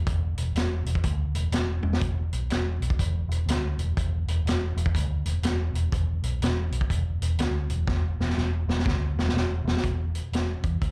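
Heard live through a club PA with a touch of room ambience, this short cut from a longer piece has a smoky blues rock and southern rock mood at 123 BPM in 4/4, swung on the eighths. A dark, round, foam-muted fingered electric bass sits up front with an amped tone, while a saturated, gritty vintage drum kit with a high-tuned snare, tight kick and rolled-off top plays hi-hat, kick, snare and toms. The drums play a fill at 1.8 seconds and another from 7.9 to 9.8 seconds, just before a new section begins.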